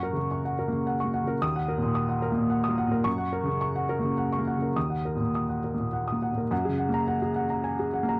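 Neoclassical minimalist piano in F# major, hopeful and tender, moving at 107 BPM in 3/4 with a rubato feel and tuned slightly flat of standard pitch. A lone upright piano plays throughout the 8.2 seconds, its woody, slightly detuned tone carrying audible action noise and long sustain as it spans D#2 to D#6, alternating F# and D#m before settling on F#add9 at 6.5 s. The dry, close recording has a 1970s studio character, placing the instrument intimately up front in this fragment cut from a longer piece.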